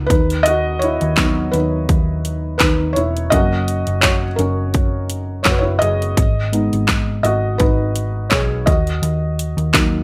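Piano-driven pop in G# minor at 84 BPM, this short cut from a longer piece feels earnest and driving, with a light sixteenth-note swing under its 4/4 pulse. A felt-muted upright piano carries the accompaniment and takes a solo across the whole ten seconds, its soft, mellow, intimate tone sitting up front with audible action noise that lends a natural closeness. Beneath it, a hollow-body short-scale electric bass, played with a pick, adds a dark, round, amped low end. The pop drum kit, electronic and layered, pushes forward with a punchy kick, fat snare, bright hi-hat and handclaps, running from 0.1 to 9.9 seconds. The harmony moves from B over D# to F#, then G# minor and D# minor, all wrapped in light reverb and digital ambience.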